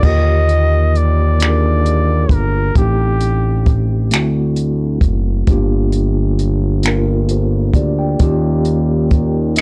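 A slow six-eight R&B groove moves at 44 BPM in a straight feel, carried by a compact cocktail drum kit of kick, hi-hat, finger snaps and crash cymbal that sounds dark and up front, with a punchy kick in a small room. Beneath it, a smooth synth bass mixing sawtooth and square tones sits close and mellow, its sustained notes carrying vibrato and the color of transformer saturation. A clean tine electric piano fills in the harmony in Eb major, moving from Ebmaj9 through Am7b5, D7 and Gm7 to Eb7. Over this, a solo flugelhorn sings a tender, jazz-style melody with light vibrato, soft attacks and scooped notes, playing until 3.8 seconds and returning at 9.6 seconds. The sound is dry and intimate, with the gritty character of a cassette tape recording, and the passage is cut from a longer piece.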